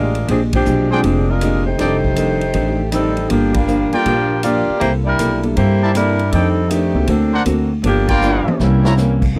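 Big band swing jazz at 159 BPM in F mixolydian, this short, energetic excerpt cut from a longer piece opens with a dark, vintage saxophone section carrying the melody up front while a clear, tight trumpet section punctuates with smooth-topped stabs from 0.9 seconds. A woody, thumpy upright bass and a swinging drum kit with a punchy kick drive the groove, and a clean hollow-body archtop guitar and an intimate concert grand piano with audible action noise sit in the background. Full-band accents hit at 0.5 and 3.5 seconds before a drum fill at 8.2 seconds, all captured in a dry, close 1970s-style studio sound with light reverb.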